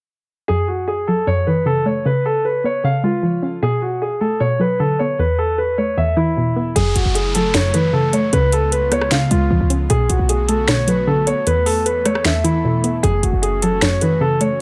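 Melancholic and dark, this half-time trap excerpt at 153 BPM in F# minor opens with a dark, mellow concert grand piano melody over a hollow, bouncy square pluck with chorus, then at 6.8 seconds an airy, breathy pad, a punchy, tight 808-style bass, a downlifter and an overdriven trap kit of sharp snare, metallic hats, rim clicks and finger snaps join, with the kick dropping out from 11.5 to 13.0 seconds, all cycling through F#m7, C#7, Bm7 and Esus4 in light reverb.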